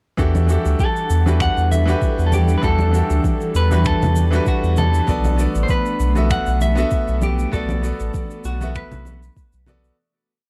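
A deep, round sub bass sits up front in this relaxed, smooth sunset chillout piece, playing a dotted-rhythm line beneath a gently swung 98 BPM groove in E minor. A bright grand piano adds syncopated chord stabs in spread voicings with tape echo, while an airy, breathy pad with chorus and phaser holds sustained chords in the background. From 0.8 s, a clean electric guitar picks out a motif-based melody, also colored by tape echo. A soft electronic kick anchors the light lounge beat, alongside a warm, rolled-off shaker and finger snaps and ringing congas set further back in a small room. The harmony moves from Em11 to Bm7 at 5.1 s, and the piece fades out from 6.7 s in a dark, warm studio mix with light reverb.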